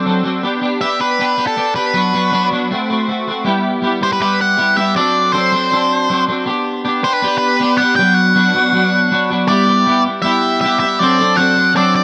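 A double-tracked twelve-string electric guitar rings out a clean, compressed, picked riff from the very start of this upbeat, jangly rock excerpt at 159 BPM in a straight 4/4. Just after, at 0.8 seconds, a dark octave-fuzz lead guitar joins up front with a distorted melody trailed by tape echo, riding over chords that move through G/B, Am6, G6 and D7 under a light reverb.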